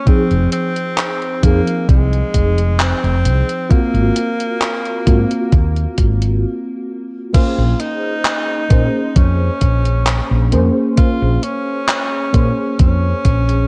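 Melancholic and nostalgic, this slow 66 BPM vaporwave fragment in Bb minor sets a clear, lightly vibratoed tenor saxophone melody with tape echo and 12-bit sampler grit over a soft, round FM electric piano wrapped in ensemble chorus, while a woody, hollow-bodied fretless bass and a thumpy, up-front electronic kick anchor the low end, a gated 80s drum machine adds crash, handclaps and hi-hat, and a brief stop from 6.4 to 7.3 seconds gives way to a second section built on a Bbm9 chord.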